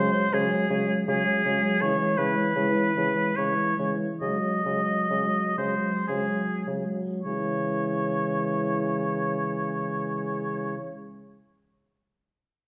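In a rubato 3/4 that drifts between 49 and 83 BPM and slows from 0.7 to 7.2 seconds, this melancholic, solemn passage from a slow romantic wind quintet movement sits in C# minor, its harmony settling on C# minor at 7.2 seconds. A clear oboe with light vibrato carries the up-front second line over a dark, soft-attacked French horn and a mellow clarinet in accompaniment, while a close-miked, warm bassoon holds the bass. The sound is wet with recital hall reverb, as if captured in a church or concert hall.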